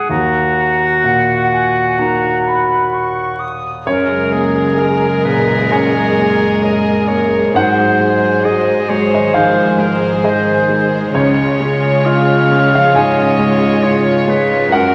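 A concert grand piano sits up front throughout this tender, hopeful film-score passage, its intimate, vintage tone carrying deep bass and audible action noise within a rubato 4/4 feel. A bright solo clarinet with a soft attack shapes a second line the whole way through, while a distant, roomy oboe and an expressive silver flute with a crisp attack add their own lines at the outset, the oboe falling away at 3.5 s. At 3.9 s the orchestra blooms: a violin section takes the melody with a pure, floating sul tasto sound as a second violin line sits softly in the background, a very quiet viola section adds woody, lush accompaniment with vibrato, and a distant cello section holds the bass. Behind them, a French horn section sustains dark chords with a smooth top. The harmony moves from D#m through F#add9 and G#7 to C#, and a wet scoring-stage reverb and vinyl crackle lend the passage a gentle patina of age.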